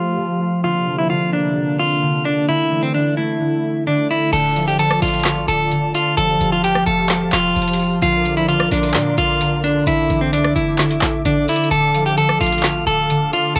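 Recorded at home on cassette in a small room, this eerie, melancholic half-time trap excerpt is led by a dark, picked clean electric guitar melody up front, treated with plate reverb and analog delay. A fingerpicked concert harp rings beneath it while a smooth, detuned sawtooth pad with chorus sits in the background, all three softened by a low-pass filter. At 4.3 s an overdriven trap kit with a woody snare, metallic hi-hats, handclaps, rim clicks and crash cymbal enters alongside a punchy, tight 808-style bass.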